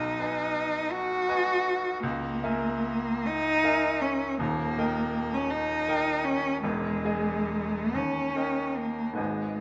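A single bowed cello sings a yearning melody with vibrato and a focused, smooth-topped tone, up front over a clear, intimate baby grand piano whose long sustain and audible action noise sit close by, both sounding from the first moment to 9.6 seconds. This solemn romantic duo in 6/8 moves slowly at 44-55 dotted-quarter beats per minute with rubato, its harmony passing from G#m/B through A#m7b5/C# and D# to Emaj7 and D#7. A moderate recital hall reverb surrounds this fragment, cut from a longer piece.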